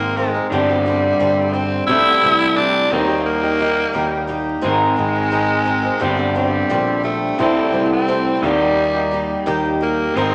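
A growling, raspy tenor saxophone carries the melody up front over a boxy, picked swing-style acoustic guitar, a twangy, slightly broken-up electric guitar riff through a small old amp and a round picked electric bass, in a straight 87 BPM rock groove with a warm, open-road mood, cycling through Abadd9, Gsus4, C6 and Eb in a large wet reverb with vinyl crackle, before a reedy tonewheel organ with fast rotary speaker slips in very quietly at 10.2 seconds in this excerpt cut from a longer piece.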